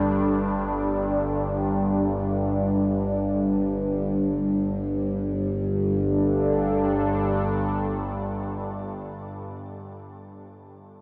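Ambient in free time, dark and unsettling, this brief excerpt sets a sweeping resonant pad of detuned sawtooth and triangle tones, with a sub octave and filter swell, holding sustained chords from G3 to A4 against an up-front drone from G1 to G2 whose moving overtones blend sawtooth and sine. Both parts have slow attacks and chorus, and the drone carries its own built-in reverb and a long release, ending at 8.7 seconds while the pad runs to 9.0 seconds. A huge, wet reverb with an 8.3-second decay and a dark production bathe the whole in a cavernous haze, the harmony opening on a G5 chord.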